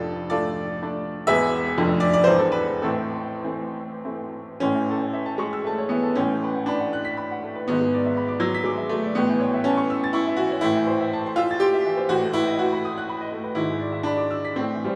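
A bright, woody upright piano opens alone and up front, sounding a brooding A minor passage in 3/4 that leans through Dm/F and E7 before settling on Am. This romantic classical character piece moves with a flexible rubato, its tempo drifting between 99 and 126 BPM, and the piano ranges from deep E1 bass up to a ringing B6. At 4.6 seconds the music turns to A major, and the bittersweet mood brightens as Bm7/A and E7/G# harmonies pass beneath the melody. The minor key returns at 10.6 seconds, with B7/A and E7/G# pulling the phrase toward an unresolved close. A wet recital-hall reverb, as from a church or concert hall, gives the piano's open tone a long, spacious tail. The recording is cut from a longer piece.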